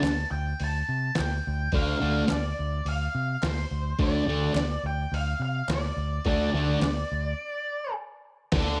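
Garage rock with a swaggering, gritty mood at 106 BPM in D minor, this short cut opens with a dark octave-fuzz lead guitar carrying the melody over a round, up-front picked electric bass, a muffled, pitched-down sampler-style drum kit with a thumpy kick, fat snare and overdrive, and crisp group handclaps set back in the background. At 1.7 seconds a bright, double-tracked thick fuzz guitar joins with a distorted riff and sits loudest of all, and a break arrives at 7.4 seconds. Light reverb and a digital ambience surround the playing.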